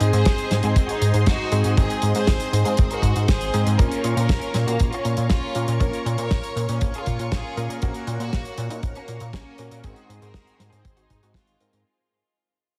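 A straight 119 BPM pulse from a dry, tight, up-front kick and a damped 70s kit's hi-hat and medium-tuned snare drives this playful, danceable italo disco excerpt, where a glossy, nasal chorused synth bass carries the low end, a clangy electric grand piano adds stabs in the background, a lush string machine holds mellow sustained chords through Ab, Bbm and Gb/Bb, and an intense chamber violin section plays the melody with vibrato and tape echo, all in a small room heavily compressed for a radio sound as it fades out from 3.8 seconds.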